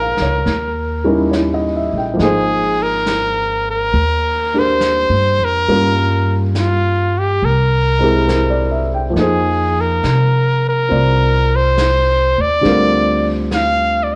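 Smoky and wistful, this short cut from a longer jazz ballad moves in an unhurried, swung 4/4. A brilliant, punchy trumpet carries the melody up front as a forceful solo voice, shaping its lines with light vibrato and scooped notes. Beneath it, a baby grand piano offers natural, short-sustained accompaniment, while a pizzicato upright bass with gut strings gives a woody, thumpy foundation. From 0.2 seconds a vintage brush kit of brushed snare and hi-hat sits in the background, with a rolled-off top and a small-room feel. The harmony drifts through rich chords such as Eb7b9, Abmaj9 and Fm7 before closing on a rootless Ebmaj13/D. A moderate studio reverb and the worn, warbling pitch drift of old cassette tape lend the recording a faded, nostalgic character.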